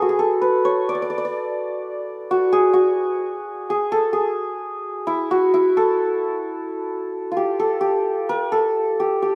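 Persian music in 6/8 at 87 BPM counted in dotted quarters, with a straight feel and a hypnotic, soulful mood. A solo santur plays throughout, its bright, shimmering hammered strings ringing up front between E4 and D5, with a new section arriving at 7.1 seconds. The instrument sits in moderate studio reverb, and the 9.3-second passage is cut from a longer piece.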